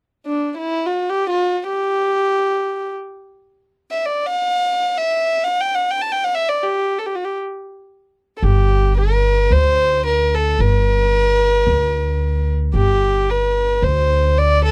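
Passionate and stately, this short Arabic passage unfolds in free time in G maqam rast, cut from a longer piece. A single bowed violin carries the melody from 0.3 seconds, played sul tasto with a soft attack and an airy, floating tone that sits close and up front, ranging from D4 to A5. At 8.4 seconds the music moves into a new section as a plucked upright bass enters, its woody steel-string tone adding a low foundation between G1 and D2. Both parts sound until the close at 14.7 seconds. The recording is dry and intimate, with little reverb, in the manner of a close 1970s studio session.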